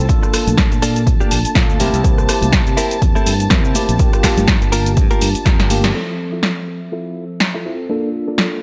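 A sunny, joyful slice of filtered disco house opens on a tine electric piano heard through its built-in speakers, phased and pumping under a low-pass filter. A lush, distant symphonic violin section holds sustained chords high in the background, roughened by vintage 12-bit sampler grit. Almost at once a punchy analog kick and drum machine set a swung groove of hi-hat, rim click, shaker and up-front snare, joined by a growly, bright fingered electric bass and very quiet, ringing tambourine and congas. A direct-recorded electric guitar, picked and compressed, plays a riff over seventh chords and adds a fill at 1.1 seconds. During a drum fill the kick drops out at 5.6 seconds, and after a band accent the bass and hand percussion stop at 5.9 seconds, leaving keys, strings, guitar and drum machine under a filter sweep until the cut. The overall sound is dry and gritty, with the kick and drum machine re-recorded in a small room.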